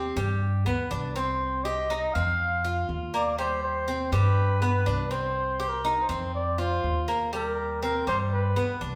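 Latin Cuban son and guajira in a warm, danceable groove, this excerpt from a longer piece has a bucket-muted trumpet carrying a veiled, mellow jazz-style solo melody with light vibrato and scooped notes. A metallic Cuban tres picks arpeggios on its doubled strings, and a woody, thumpy pizzicato upright bass anchors the low end. All three sit up front as a band playing live in one room, bathed in a lush large-studio reverb.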